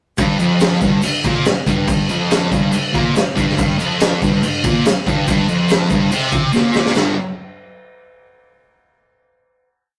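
A thick, double-tracked fuzz guitar drives a single-note riff up front in this short, swaggering, raw garage rock piece at 142 BPM, backed by a boomy, gritty drum kit with a high-tuned snare and a grainy egg shaker in the background, captured as a rough rehearsal-room recording with light reverb, with a drum fill at 6.5 seconds leading into a final chord at 7.0 seconds.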